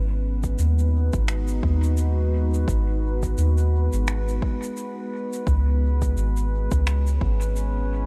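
Ambient dub at 86 BPM in 4/4 with a 16th-note swing, this meditative, deep excerpt sits in G# minor and is cut from a longer piece. A warbly, nostalgic tape-like pad holds sustained chords from the start, its detuned sawtooth and triangle tones blooming slowly through chorus and built-in reverb, moving from G#m7 to C#m7 at 5.5 seconds. Up front, a soft, round dub sub bass built from triangle and square waves sustains low notes with a fast attack, thickened by tube saturation. An overdriven electronic kick enters at 0.4 seconds, layered and re-recorded in a large room so it sits deep in the background. Alongside it, an acoustic shaker and finger snaps with a natural small-room, brush-like character trail off into dub echo, while tape saturation colors the studio ambience.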